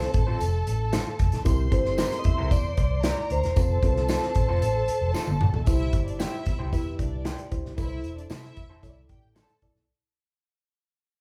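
An up-front acoustic drum kit with a tight kick and medium-tuned snare drives this joyful, uplifting 1960s-style soul at 114 BPM in C major, while a soft, flute-like tonewheel organ carries the melody through a slow rotary speaker until 5.1 s, when a drum fill leads into the fade-out at 5.7 s. Beneath it, a dark, round foam-muted fingered bass anchors the low end, a reedy electric piano with harmonic tremolo fills out the harmony, and a lush bowed string section adds a second line, as a slightly broken-up, lo-fi guitar adds stabs with spring reverb and a jingly tambourine sits in the background. The band plays live in one room, with a large studio reverb giving the sound a natural, cohesive space.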